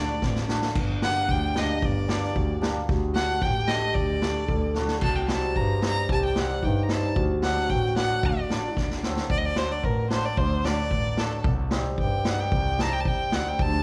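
Bittersweet and soulful, this klezmer passage in D phrygian dominant moves at 112 BPM in a straight 2/4, with a rich, vibrato-laden bowed violin up front carrying the melody through a slapback echo while a dark, veiled trombone in a bucket mute sings a second line beneath it. A shimmering, ringing hammered dulcimer supplies accompaniment, a clear bowed double bass holds the low end, and an up-front street-band drum kit with a boomy kick and medium-tuned snare adds fills at 0.2, 4.8 and 8.8 seconds. At 9.3 seconds the trombone drops out and the violin takes a solo over D and then C minor harmonies, all in light reverb, in a cut from a longer piece.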